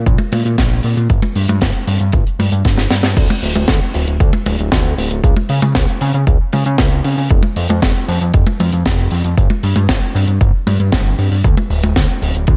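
A thick, detuned sawtooth bass with a moving notch opens this sunny, danceable italo disco excerpt at 116 BPM, joined almost at once by a punchy electronic kick carrying small-room ambience and a dry, tight funk kit with bright cymbals, a high-tuned snare, toms and gated reverb, whose fill at 2.7 seconds leads into a new section at 3.2 seconds, all held up front in a close, dry mix.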